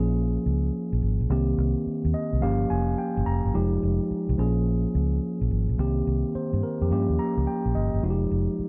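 Confident and punchy, this short R&B cut swings its sixteenths over a mellow, clean tine electric piano that adds fills from 1.9 to 3.5 seconds and again at 6.9 seconds, riding a vintage muted fingered electric bass that sounds dark, round and foam-muted, both parts up front in a digital ambience as the chords cycle through Bbm7, Cm7, Gm7b5 and Fm9.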